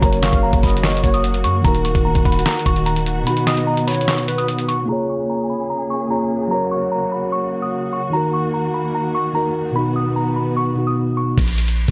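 An eerie, brooding half-time trap beat at 148 BPM opens with nearly everything at once: a thumpy, pitched-down sampler-style drum kit up front with hi-hat, handclaps, snare and crash; a deep, boomy 808-style bass; and a mellow tine electric piano laying down Gb, Ebm and B chords alongside bowed studio strings full of vibrato and portamento. High above, a delicate, tinkling FM bell with chorus and a vintage warble carries the melody, while a velvety synth lead with a sub octave and analog delay enters at 0.2 seconds to trace a second line through the opening section. The bass drops away at 3.2 seconds and the kick falls silent soon after, so the drums thin out and then stop just before a filter sweep begins at 4.9 seconds over a Bbm7 chord. The remaining piano, strings and bell drift through the same progression, low-pass filtered, before the bass and drums return briefly at 11.4 seconds. 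The mix is dry and gritty, with a cassette-tape character and very little room around the sounds, in a cut from a longer piece tuned to A4 = 438 Hz.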